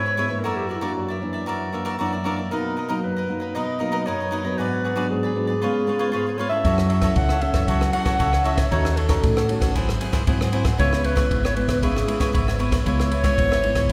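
A breathy, mellow clarinet solos in a close-miked jazz style with light vibrato and scooped notes over crisp picked cavaquinho and an up-front fingerpicked classical nylon-string guitar with audible finger squeak in this sunny, joyful samba-choro excerpt, and at 6.6 s a round, dark fingered electric bass and a compact, dry cocktail drum kit with punchy kick, ride cymbal and rim click join, the ensemble ringing in the lush reverb of a church or concert hall.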